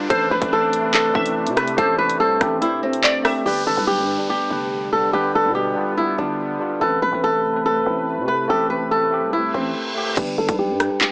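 A dark, fingerpicked flamenco guitar sits up front, carrying the melody through a low-pass filter over a cold, half-time drill groove, joined by a clean tine electric piano and a sweeping, airy sawtooth pad with chorus in the background. A crystalline wavetable pluck with chorus and digital delay adds a second line until 3.4 seconds, while a growling, buzzy 808-style bass runs beneath a gritty drill kit of hard-clipped kick, hi-hat, handclaps, rim clicks and crash. The drums drop out after the opening, while downlifters and a reverse cymbal sweep through the middle alongside the guitar, piano, pad and bass before a short break at 9.8 seconds and the kit's return at 10.2 seconds, all with light reverb and a small-speaker sound.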